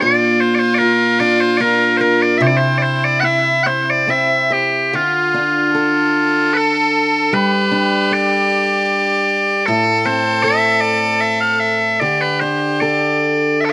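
In a rubato 3/4 that drifts between 69 and 80 BPM, this mournful Celtic slow air carries a sense of longing, settling into D dorian at 4.9 s and tuned to A4 = 444 Hz. Loud, piercing bagpipes hold the melody up front, while a single bowed fiddle with an earthy, smooth top plays a quieter second line and a picked, boxy parlour steel-string acoustic guitar sits forward in the accompaniment. Each of the three parts carries a slapback echo, and the outdoor recording has little reverb and an open, roomless sound, heard as a cut from a longer piece.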